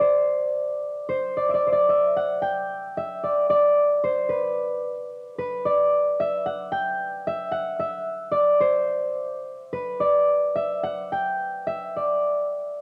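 Haunting and longing, this brief Celtic folk fragment is cut from a longer piece and unfolds in a free, rubato 4/4. A solo concert harp plays throughout its 12.8 seconds, its mellow, thumb-plucked notes ringing up front across a range from B4 to G5. The home cassette recording lends the harp a tape-worn character, set in a light reverb.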